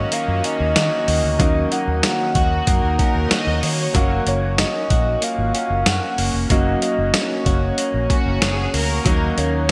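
Bright 1980s-style digital production sits in a lush hall reverb on this urgent, moody pop cut in Eb minor at 94 BPM, moving between Ebm7 and Gb. A gritty, pitched-down sampler-style drum kit with a thumpy kick and gated reverb sits up front beside a dark, punchy, foam-muted fingered bass, while a round, octave-layered synth lead with vibrato carries the melody through chorus, shimmer reverb and digital delay. Behind them, a clear grand piano, a picked, direct-recorded clean electric guitar riff and an evolving sawtooth pad with a filter swell and slow attack fill in, and a smooth, bowed studio violin section adds a second line at 2.4 s and again at 8.1 s.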